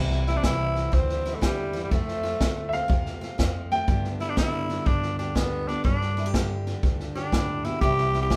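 A swung 4/4 groove at 122 BPM in C major sets a heartfelt, down-home honky-tonk and classic country mood. The up-front vintage drum kit with its medium-tuned snare, punchy kick and hi-hat, a thumpy, woody upright bass and a full-bodied picked dreadnought acoustic guitar carry the accompaniment through C, F and G. A raspy, growling tenor saxophone with light vibrato leads from 0.3 seconds, while a brilliant upright piano with audible action noise adds a brief second line between 2.7 and 4.0 seconds, all in a live-room sound with wet studio reverb.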